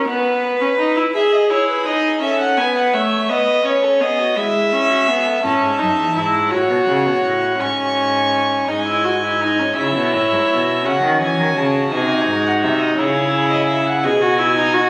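In a straight 6/8 at 56 BPM, this joyful, elegant baroque-style string quartet fugue, cut from a longer piece, opens with a dark violin second line and a warm, close viola with an airy bow. A second dark, nasal violin takes the melody from 1.1 s, and a reedy gut-string cello bass enters at 5.4 s as the music turns from E major to C# minor, all set in a moderate scoring-stage reverb with a phone-in-the-room sound.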